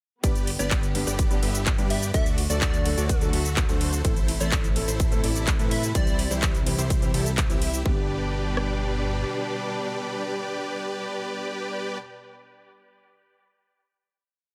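Festival progressive house in G major at 126 BPM, euphoric and triumphant, opens straight into a drop where a punchy four-on-the-floor kick with rim clicks and a tape-warm house kit of metallic hats, cabasa, ride and handclaps drive a huge, thick, detuned supersaw riff in dotted-rhythm chords, alongside a fat analog bass with filter sweeps, lush bowed strings, a soft felt-muted upright piano in the background and a bright, plucky unison lead entering at 0.6 seconds, with sidechain pumping on the supersaw, bass, strings and piano and dub echo on the supersaw, piano and lead, all set in a digital ambience, until at 7.9 seconds the supersaw, strings and piano settle onto a final G chord that rings to 12.0 seconds.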